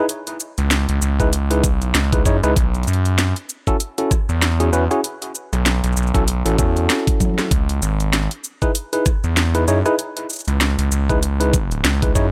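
A dry, up-front glitch hop excerpt with a funky, gritty swing opens on clean, amp-colored tine electric piano stabs with sidechain pumping and tape echo, joined by an overdriven, small-room drum kit with cracking snare and bright hats, a gritty, aggressive sync-edged synth bass with tube saturation from 0.6 seconds, a knocking electronic kick from 1.2 seconds, and a drum fill at 7.2 seconds before the C#m9 returns.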